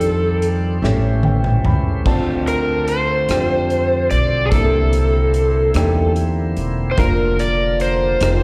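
This excerpt carries the sound of a live gig heard through a venue's PA, with light recital-hall reverb, as a slow, soulful and jubilant gospel piece moves at 49 BPM in 6/8 in Bb major over chords from F13 through A7, Dm7 and C13 to Bb/F. An up-front, overdriven slide guitar carries the melody with slapback echo, while a woody, thumpy pizzicato upright bass sits equally forward, and a clear, intimate grand piano with audible action noise and a reedy tonewheel organ with key click and slow rotary speaker hold the accompaniment and sustained chords. A natural country drum kit with dark cymbals and a punchy kick plays throughout, and it joins the piano in a fill from 0.8 to 2.1 seconds.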